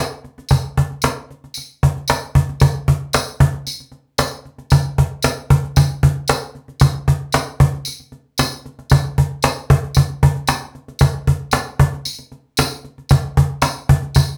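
Soul groove at 114 BPM in a straight 4/4, uplifting and joyful, carried entirely by percussion in this short excerpt cut from a longer piece. A snappy acoustic cajon with snares sits up front in a small room, playing from 0.2 seconds to the end, while a jingly tambourine, close, dry and warm, rides beneath it at a lower level from 0.5 seconds. The pair sits in a moderate studio ambience, and the opening passage gives way to a second section at 2.6 seconds.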